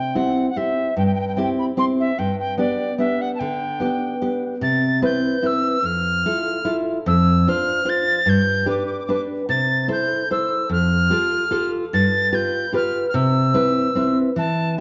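An Italian folk serenade in a lilting, swung triple metre, this sunny and lively fragment runs for just under 15 seconds. A soprano recorder carries the melody high above, its woody, pure tone marked by gentle vibrato, crisply tongued notes and an audible chiff that give the line an expressive, singing quality. Beneath it, a nylon-string guitar supplies fingerpicked classical accompaniment, acoustic and warm, sitting up front alongside the recorder throughout. The opening phrase moves between simple major chords before the music settles into a new key at 4.6 seconds, where richer harmonies such as major sevenths, a sixth and an added ninth colour the second passage. A recital hall reverb wraps both instruments in a lingering, dark-toned glow, lending the intimate duo an air of evening charm.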